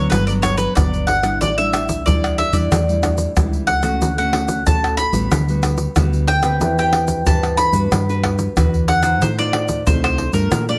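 Samba and choro in a playful, festive spirit, cut from a longer piece, with a woody, double-strung mandolin up front carrying the picked melody in plate reverb over a fingerpicked, classical nylon-string guitar. A punchy, foam-muted fingered electric bass sits direct and amped beneath, while egg shaker, tight surdo, pandeiro and tamborim, played with soft hands, come in at 0.1 s, close, dry and up front. A moderate studio reverb surrounds the band as the harmony moves from Gmaj7 through Dmaj7 and Cmaj7/E to F7/A.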